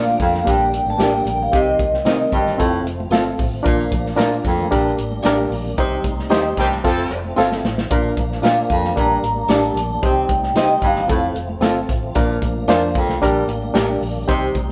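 A straight 4/4 groove at 113 BPM drives this joyful, uplifting slice of uptempo 1960s-style soul, heard as a band playing live in one room: a tight, roomy drum kit, a punchy foam-muted bass, faint high-tuned congas and a subtone baritone saxophone riff carry a Gm–Cm–F–Bb cycle beneath a barky electric piano with fast tremolo, slightly broken-up lo-fi guitar stabs and a lightly overdriven tonewheel organ turning on a slow rotary speaker in the background, while a metallic, ringing vibraphone carries the melody at the start and again from 8.4 seconds, and a clear, soft-attack horn section adds a brief second line at 6.3 seconds during a band accent capped by a drum fill.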